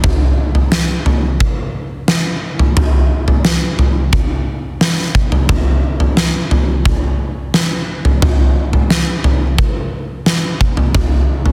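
A huge arena drum kit, punchy in the kick and fat in the snare with toms alongside, sits up front through this short dream pop excerpt, playing from 0.0 to 11.5 seconds at a straight 88 BPM in 4/4. The acoustic kit rings in a big room with moderate concert-hall reverb lasting 2.3 seconds, giving the haunting, ethereal mood its spacious air. The dense, heavily limited modern master keeps the sound full and forceful.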